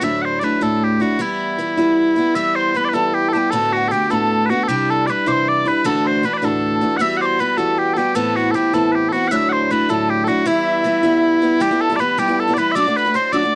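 A dry, close recording with a 1970s studio feel sits in a small, wet booth ambience that keeps every part near and intimate. This Celtic folk excerpt in E minor moves at 104 BPM in a straight 6/8, with a driving, wild mood. Small bagpipes carry the melody from the first second, their sweet, continuous tone up front with vibrato, while a picked steel-string parlour guitar plays accompaniment alongside, bright and boxy in the low and middle register. At 2.4 seconds a tin whistle enters with a second line high above, metallic and airy, its tongued notes showing chiff and vibrato as it sits in the background despite close miking. The harmony moves through chords such as Dadd9, Em, Cadd9 and Amadd9, and the passage shifts into a new section at 11.6 seconds before landing on D/F#.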